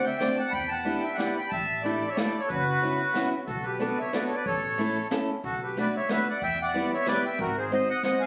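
A swung 3/4 lilt at 184 BPM drives this whirling, bittersweet musette waltz fragment in B minor, where a reedy accordion with slow beating carries the melody up front over a fingerpicked steel-string acoustic guitar with audible finger squeaks, joined by a woody pizzicato upright bass entering at 0.5 seconds and a brushed jazz drum kit with a punchy kick and medium-tuned snare set in the background, all heard through a moderate recital hall reverb as if captured on a phone in the room.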